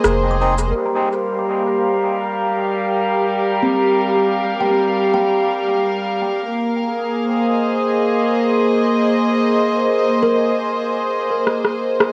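A hazy, peaceful ambient dub excerpt with the soft wash of a cassette home recording and a wet reverb, moving at 84 BPM in 4/4 as rich, floating bowed strings hold low-passed chords up front from Bb9sus4 to Gm7 and back, a woody kalimba plucks mellow arpeggios in the background through analog delay and plate reverb until 10.8 seconds, a deep, round sub bass note and a brief reedy melodica stab with dub echo sound only at the start, and the overdriven electronic rim click and shaker return for a fill at 11.5 seconds.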